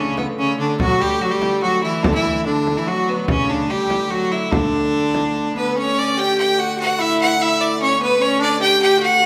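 A bright, biting fiddle carries the melody up front in this rustic, ancient-sounding medieval dance, cut from a longer piece and moving at 146 BPM in 3/4 in D major. Beneath it, a reedy viola da gamba with gut-string tone and an airy bow plays a ringing second line, while a smooth, even hurdy-gurdy holds a close drone. A deep frame drum struck with hard hands sounds from 0.2 to 5.7 seconds, and a wet recital hall reverb surrounds the ensemble.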